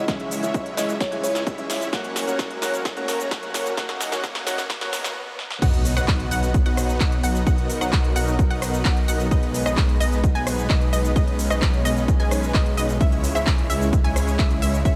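Uplifting and euphoric, this festival progressive house excerpt in B major moves at 130 BPM, opening with a build-up where a sparkling, bell-like FM electric piano and an intimate baby grand piano with audible action noise sit in the background alongside a nasal unison pad, a huge compressed supersaw riff, a thick detuned saw bass and very quiet risers and swells. An overdriven big-room drum kit with a punchy snare, crisp hats, handclaps, crash, rim click and shaker, anchored by a tape-toned electronic kick up front, plays a fill into a short break before the drop at 5.6 s, marked by an impact. From there, a bright unison pluck adds arpeggios as the chords move from B through G#m/B to C#m, with sidechain pumping on the synths and a light reverb over the mix.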